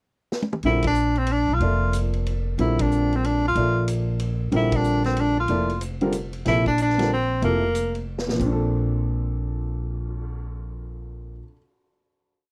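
A drum fill on a vintage kit with dark cymbals and a gritty, saturated edge opens this short, searching modal jazz piece in Bb lydian, swinging in 3/4 at 186 BPM. The woody pizzicato upright bass settles into a two-feel, the warm baby grand comps in syncopated quartal voicings over a Bbmaj9, and a clear, roomy tenor saxophone states hypnotic hook phrases with light vibrato and scooped notes, while the drums keep a ride cymbal pattern and the band hits accents together. After a second drum fill at 8.1 seconds, the group holds a final chord, all captured in a dry, close 1970s-style small-room sound.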